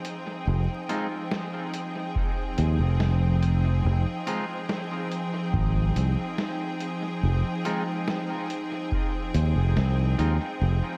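A growly, punchy fingered electric bass sits up front in this meditative, spacious ambient dub excerpt at 71 BPM in F minor, resting on a single Fm7 chord while a biting, distant symphonic string section holds sustained chords from the start. A muffled, lo-fi sampler-style kit of hi-hat and snare drifts in the background with dub echo, a deep analog electronic kick joins at 2.2 seconds, and a clean semi-hollow guitar adds picked stabs through spring reverb and dub echo. The dreamy mix is soaked in lush hall reverb and dusted with vinyl crackle.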